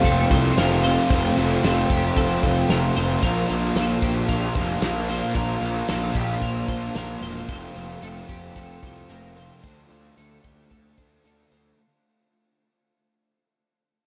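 A loose, small-room indie drum kit with a tight kick and rolled-off top holds a straight 4/4 at 112 BPM in this brooding, hazy piece of shoegaze and dream pop, where a biting overdriven guitar riff sits up front with reverse reverb, a dark, thick fuzz guitar riff adds weight, a growly fuzz picked bass anchors the low end, and a bright, clean twelve-string electric guitar plays compressed arpeggios in the background through analog chorus and delay, the whole mix soaked in a huge 8.2-second ambient reverb and fading out over F, Bb6 and Dm7 until about 11.8 seconds.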